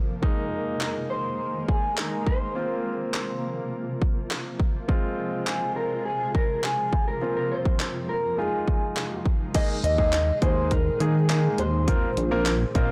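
Dance-pop at 103 BPM in straight 4/4, this energetic, driving excerpt is cut from a longer piece and carries a blown-out, overdriven sheen over light reverb. A clear concert grand piano with audible action noise and long sustain plays accompaniment from the start, sharing the opening with a cloudy, blurred granular pad that holds sustained chords through its own reverb, both pumping against the sidechain. A punchy house drum kit enters at 0.2 seconds with kick, cracking snare, hi-hat, handclaps and crash, sitting up front with a small-room character. From 0.8 seconds a dark, clean, fingered electric guitar carries the melody, dressed in lush chorus and delay. The harmony moves through suspended chords and F minor colours, and at 9.8 seconds a glossy, retro synth bass arrives up front with a pulse-width, filter-plucked tone and its own sidechain pumping, before a brief grand piano fill closes the passage at 12.5 seconds.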